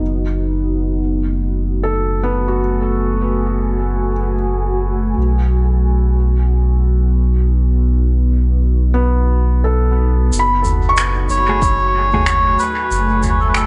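A 93 BPM pulse in 4/4 with a 16th-note swing sets this hazy, spacious ambient dub excerpt in F# dorian, moving from F#madd9 to B at 5.2 seconds and back at 10.3. A deep, dark pad holds sustained chords with a slow attack, chorus and built-in reverb, while a felt-muted upright piano plays soft, intimate arpeggios through dub echo under a filter sweep, and a round sine sub bass sits up front beneath them. At 10.3 seconds a soft-mallet drum kit arrives with finger snaps, shaker and toms in a big room sound, joined briefly by a deep, tape-warm electronic kick. A reedy, breathy melodica takes the melody up front from 11.3 seconds, with a clean, compressed electric guitar adding quiet stabs in the background, both carried on dub echo. The mix is echo-heavy and dark at the top, giving the whole piece a murky, dreamlike glow.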